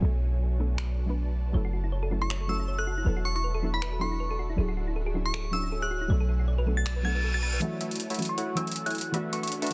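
Lush and emotional, this short future bass passage moves at 158 BPM in a half-time feel with a light swing, set in F# minor and tuned slightly below standard pitch. A soft, round pluck with analog chorus and delay and an ethereal, airy pad with ensemble chorus, reverb and tremolo sit under the harmony from the start, while a deep, boomy 808-style bass with a dark, sine-based tone sits up front until 7.6 seconds. The dubstep drum kit enters at 0.8 seconds with finger snaps, metallic hats and a tape-warm character, its snare gently clipped. A mellow, tine-like thumb-piano-style pluck adds arpeggios with chorus and delay, and a glassy, crystalline FM bell carries the melody high above, treated with chorus, phaser, filtering and delay. Following a reverse cymbal, and with a riser sounding underneath, a punchy, detuned supersaw stab takes over a riff at 7.6 seconds under an evolving filter sweep as the build-up begins, over chords cycling through Bm7, F#m7, E9sus4 and Dmaj9#11, all within a dense, heavily limited modern master with digital ambience.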